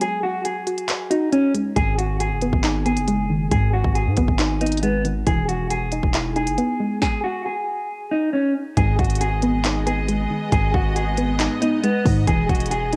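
A hazy, home-recorded cassette sound with digital ambience wraps this dark, menacing trap excerpt, which moves with a half-time feel. A mellow, clean electric guitar carries the melody up front, its fingered tone dulled by a low-pass filter, while a soft, round pluck with chorus and a gentle, wave-folded edge fills in the accompaniment beneath it. The electronic drum kit hits hard and close, with a clipped kick, a sharp snare, crisp hi-hats and handclaps. After a brief opening break, a deep, sine-like 808 bass arrives at 1.8 seconds with a fast attack and long decaying notes, anchoring the harmony as it shifts from minor to a lush major-seventh colour before a pause in the chords. At 8.8 seconds a distant, bright symphonic string section enters with intense, lightly vibrato-laden bowed chords, adding a cinematic shadow beneath the beat.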